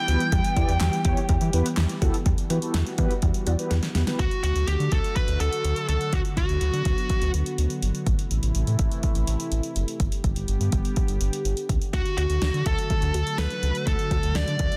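Synth-pop at 124 BPM in D major with a nostalgic, wistful mood, this cut opens on a swirling, phased analog pad and a fuzzy, picked lead guitar melody that drops out at 7.3 seconds and returns at 11.9, over a round analog bass, an up-front deep house kit of deep kick, fat snare, handclaps and hi-hat, a brief chorused synth brass, and a very quiet, squelchy blip pluck arpeggio, all in a dry, dense, heavily limited mix.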